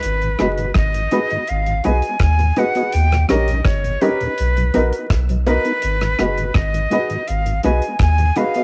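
A breathy, bright flute melody with crisp chiff and tape echo leads this laid-back, meditative roots reggae groove at 83 BPM in G# dorian, sounding from the first beat together with a deep, round dub sub bass and a dry 70s drum kit of tight kick, hi-hat and rim click, all up front. A soft tonewheel organ with chorus vibrato, key click and a stopped rotary speaker enters at 0.2 s, and a clean, compressed electric guitar with tremolo sits in the background alongside woody, slightly detuned upright piano stabs from 0.4 s. All move through G#m7, D#7 and Bmaj7 in a cassette home recording with light reverb and vinyl crackle.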